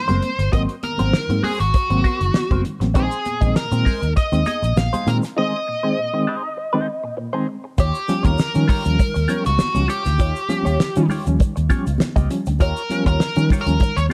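A dark, small-room production frames this playful funk piece at 100 BPM in Eb mixolydian, cut from a longer piece and moving through Ab9, Bb9sus4 and Eb9, with a break from 5.4 to 7.8 seconds. A nasal, overdriven lead guitar with a parked wah carries the melody up front over a barky, reedy electric piano playing stabs with fast tremolo, while a clean, compressed, direct-recorded guitar adds accompaniment through wah and subtle chorus. A round, foam-muted fingered bass sits forward beside a dry 70s kit with a fat snare and tight kick, with thick-skinned, high-tuned congas in the background and a grainy egg shaker joining at 3.0 seconds.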